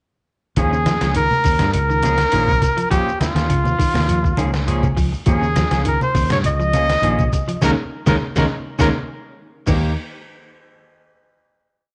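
Hypnotic and funky, this short afrobeat piece sets an up-front, punchy trumpet with vibrato and scooped notes over a picked clean electric guitar ostinato, twangy funk strumming from a slightly broken-up electric guitar with lush chorus, a round, dark fingered bass riff, and a gritty, pitched-down sampler-style drum kit, with background congas, grainy shekere and very quiet woody claves filling out the groove, a band accent arriving at 7.6 s and a final hit at 10.0 s.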